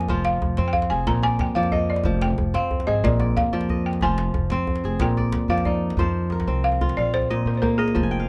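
West African traditional string and xylophone music in a flowing, reflective 12/8 at 122 BPM in F dorian, where a dry, buzzing balafon played with rubber mallets takes a solo melody over crisp, ringing fingerpicked kora arpeggios, woody pizzicato upright bass and tight, cracking djembe, alternating Fm and Bb before shifting to a new section at 6.0 seconds and closing on a kora fill at 8.0 seconds in this close, detailed excerpt cut from a longer piece.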